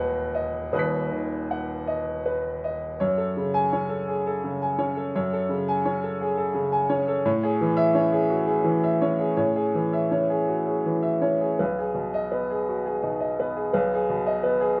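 Neoclassical minimalist piano in a melancholic, intimate mood, this short fragment of a longer piece drifts in 6/8 at roughly 51-58 BPM, counted in dotted quarters, with a rubato feel in F# dorian, tuned to A4 = 443 Hz. A solo upright piano carries it from start to finish, its tone woody, smooth and vintage, with long sustain and a close, up-front presence. The instrument covers a broad span, from D#1 up to B6. An opening passage rests on B/D# before a new section begins at 3.0 seconds, moving through F#madd9, Amaj7 at 7.2 seconds and G#m/B at 11.6 seconds. A moderate small-room reverb adds a short, natural tail that keeps the sound close and personal.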